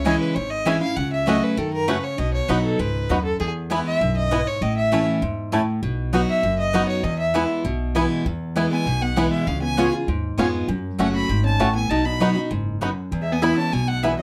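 A virtuosic, joyful bluegrass excerpt in E major races along at 198 BPM in a straight 4/4, with a clear, focused fiddle carrying the bowed melody, its light vibrato and smooth top sitting up front beside a bright, full-bodied picked dreadnought guitar. A twangy, percussive banjo spins arpeggios, a woody mandolin adds stabs on doubled strings, and a thumpy pizzicato upright bass anchors the low end. At 8.7 seconds a nasal, metallic lap resonator guitar joins with a slide second line, all set in a moderate studio ambience over a progression that moves from C#m through to E.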